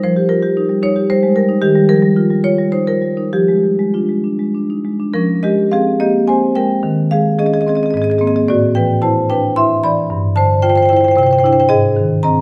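A solo marimba played with medium mallets sits up front, dark and smooth across its range from G2 to C6, in this flowing, hypnotic excerpt from a contemporary classical piece in a rubato 3/4, its added-ninth and suspended chords moving into a new section at 5.1 seconds, all within a wet recital-hall reverb.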